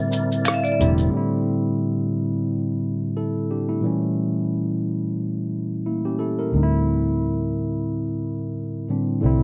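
A brief, smooth and soulful neo-soul R&B break opens the excerpt at 89 BPM with a lightly swung feel: a ringing, metallic hard-mallet vibraphone melody sits over a barky, bright tine electric piano and a fat, lightly overdriven tonewheel organ with key click and slow rotary speaker, joined by a gritty, compressed sampler-style kit of hi-hat and rim click plus saturated maracas and finger snaps in the background. At 1.1 seconds the other parts fall away and the clean, up-front electric piano carries the chords by itself, moving from C69/A through A7b9 to D9sus4. The dark, round, foam-muted electric bass then returns at 6.5 seconds, all in a dry, close 1970s-style studio sound.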